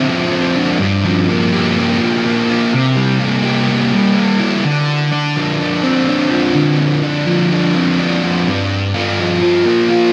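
Melancholic and hazy, this brief rock fragment, cut from a longer piece, features a lone thick fuzz guitar, dark and double-tracked up front with distortion, lush chorus and tape echo, picked through a straight 4/4 chord pattern moving from Dm9 to Gm7 and C7, then shifting at 4.6 seconds to Dm7 before returning to Gm7, all set in a dreamy mix soaked in a wet plate reverb.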